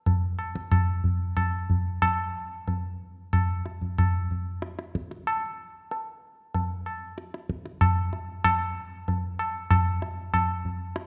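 This short cut from a longer Indian classical piece is meditative and introspective, moving at 94 BPM in a straight 5/4. A single tabla carries the whole recording from 0.1 s to 11.1 s, its high-tuned, acoustic voice producing short-ringing strokes. The drum sits close and up front, dry in its own sound, while the surrounding space has the lush reverb of a recital hall with a 1.7-second decay. The tempo gradually speeds up across the excerpt, and a new section begins at 8.4 s, bringing a fresh turn as the pace keeps rising.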